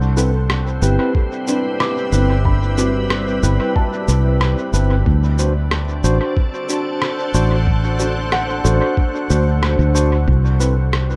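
A round, dark fingered electric bass sits up front with tube saturation in this peaceful, hazy ambient dub piece, joined from 1.1 seconds by a thumpy, muffled, overdriven electronic kick. A detuned, organ-like pad holds slow-attack chords moving from Cmaj7 to D7 through ensemble chorus, while a felt-muted upright piano with audible action noise plays boxy arpeggios in the background through a low-pass filter and analog delay. A clean tine electric piano adds tremolo stabs with dub echo, and a pitched-down cabasa and rim click, overdriven and echoed, complete this echo-heavy mix with light reverb.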